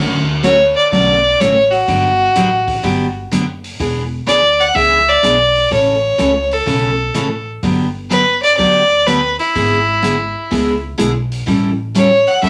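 Country western swing with a cheerful, playful mood, cut from a longer piece and riding a swung 4/4 feel. A bright, full-bodied picked steel-string acoustic guitar sits up front from the start, its accompaniment carrying audible finger squeak, while a woody pizzicato upright bass anchors the low end. At 0.4 seconds a rich, focused fiddle takes the melody, bowed by a single player with light vibrato and a slightly boxy tone, standing clearly at the head of the mix. A swinging big-band drum kit of hi-hat and punchy kick sounds distant and roomy, its top end rolled off. The chords move through major sevenths and dominant sevenths over roughly 12.5 seconds, all set in a moderate studio reverb.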